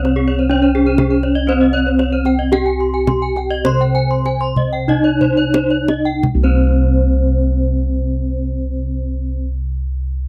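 A dry, close studio recording in the manner of the 1970s catches this brilliant, shimmering fragment of Balinese gamelan in C pelog, its tempo moving between 42 and 66 BPM in a straight 4/4 and slowing through the opening 6.2 seconds. A ringing bronze metallophone carries the melody, struck with horn mallets and tuned in pairs so its notes pulse with shimmering beats. Two higher metallophones spin arpeggios above it, one with a boxy small-room tone and the other brighter and more airy, while round, up-front bossed gongs hold the bass and a tight kendang played with hard hands drives a fill from 4.6 seconds before dropping out at 6.9 seconds.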